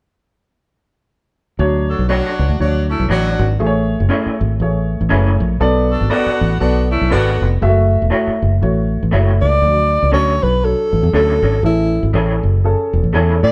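Joyful, danceable soul excerpt at 119 BPM with a swung 4/4 feel, where a punchy, foam-muted fingered electric bass and a woody, mellow upright piano carry the groove from 1.6 seconds, a soft-attack saxophone section adds a second line, an electric guitar through a small old amp supplies slightly broken-up, lo-fi stabs with tremolo, and a breathy, whispered alto saxophone takes an intimate, close-miked subtone melody with scooped notes from 9.4 seconds, all heard live in a stone room on cassette tape over Dmaj7, Amaj7, Bm7 and F#m7 chords.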